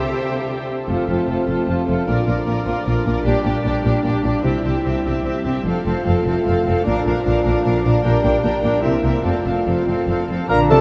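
Lively and spirited, this brisk classical-period movement for symphony orchestra moves at 150 BPM in 3/4 with a rubato feel in F major, drenched in a huge, wet reverb that places it in a vast, echoing space. Muted violin sections carry the melody and a second line over veiled, con sordino violas, a lush cello section and dark double basses, while a mellow, loosely played French horn section enters at 0.9 seconds with sustained chords as the harmony cycles through F, Bb and C toward a C7 that resolves to F. At 10.5 seconds a solo cor anglais, a hollow, airy flute ensemble and a distant, roomy bassoon join just before the cut.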